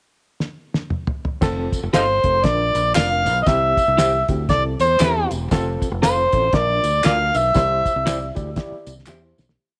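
A cloth-damped, thuddy drum kit opens with a fill before a joyful, danceable 1960s-style soul groove at 118 BPM in F major takes hold at 1.4 seconds, where round fingered electric bass with chromatic approach notes, a reedy, gritty electric piano with fast tremolo, and tambourine with handclaps on the backbeat join in, followed at 1.9 seconds by an up-front, overdriven harmonica playing hook phrases with tongue slaps and short, slightly broken-up guitar chops in the background, all in a small room that fades out from 7.5 seconds.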